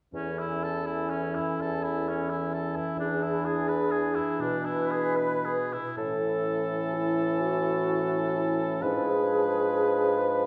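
Serene and warm, this slow romantic movement for wind quintet moves in 6/8 at 42 BPM, with rubato and uneven beats in A major, cut from a longer piece. An airy wooden flute with vibrato carries the melody over an up-front oboe with light vibrato on the second line, while a clear, vintage-toned French horn and a soft-attack clarinet fill the accompaniment above a punchy, mellow bassoon bass. Heard from further back in a wet recital hall, the harmony moves from A/E to E7, then shifts to A at 6.0 seconds before closing on G#dim7 at 8.8 seconds.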